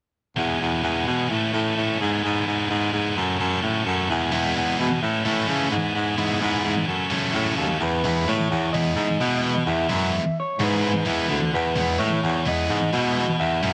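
A straight 4/4 rock groove drives this upbeat, jangly piece, where a scooped high-gain guitar riff and a raspy, gritty baritone saxophone carrying the bass line start together. A second distorted guitar riff touched with subtle chorus joins at 4.3 seconds, and a twangy, lo-fi melody from an electric guitar through a small old amp arrives at 7.8 seconds as the E, A, E/G# and F#m progression cycles within digital ambience.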